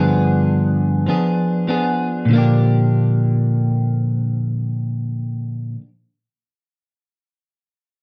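A clean, picked electric guitar sits up front in this short indie pop fragment, its tone colored by a subtle chorus and a vibrato effect. The mood is dreamy and hazy, moving at a moderate 99 BPM in a straight 4/4 feel in B-flat major. The guitar plays accompaniment across a range from G2 to Ab4, opening on a G7b9 chord before settling onto Bb6 at 2.3 seconds, where a second passage begins. A moderate studio reverb adds a soft sense of space around the playing. The production is dark and warm, and the clip is cut from a longer piece, ending at 5.9 seconds.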